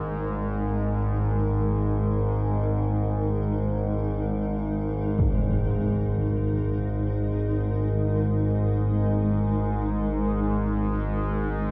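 Steeped in cathedral reverb with a long 5.4-second tail and the grain of cassette tape, this excerpt of unsettling, ominous dark ambient drone hovers in free time on a G#sus2 chord, tuned to A4 = 438 Hz. Up front, an analog drone in the low register blends sawtooth, pulse and sine tones, wave-folded and treated with pulse-width modulation and chorus, slowly evolving with a slow attack and long release. Above it, a cloudy, blurred granular pad of detuned triangle unison voices drifts through sustained chords under a moving notch, while a huge, bright, low-pass-filtered impact lands in the background at 5.2 seconds.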